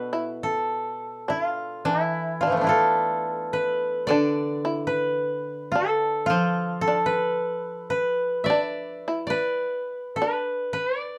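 An up-front koto carries the melody with a dry, woody tone, played with fingerpicks across a broad range, while a second koto supplies a low accompaniment that stops at 9.6 seconds. A fretless shamisen, plucked with a plectrum, adds a buzzing, percussive second line in a narrow middle register. This meditative, austere excerpt of Japanese chamber music moves with a rubato feel in 4/4 and sits in light reverb.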